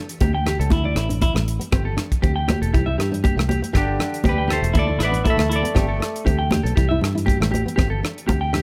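Warm and danceable, this short highlife guitar band excerpt moves at 119 BPM in 4/4 with a light sixteenth-note swing, set in G major and cycling through Gsus2, Dsus2 and C before landing on a G5 chord near the end. A tight, dry funk drum kit sits up front with a tight kick, hi-hat and rim click, joined by ringing, high-tuned congas struck with hard hands, while a foam-muted fingered electric bass gives a warm, punchy, direct low end. A bright, twangy clean electric guitar spins compressed arpeggios through spring reverb and slapback echo, over a dark, full-bodied fingerpicked steel-string acoustic guitar tucked in the background. From 3.8 to 6.5 seconds a hollow-bodied semi-hollow electric guitar steps forward with the melody, colored by subtle chorus and slapback echo, as a bright trombone with light vibrato adds a second line behind it. The room sound is dry and nearly free of reverb, keeping the groove crisp and immediate.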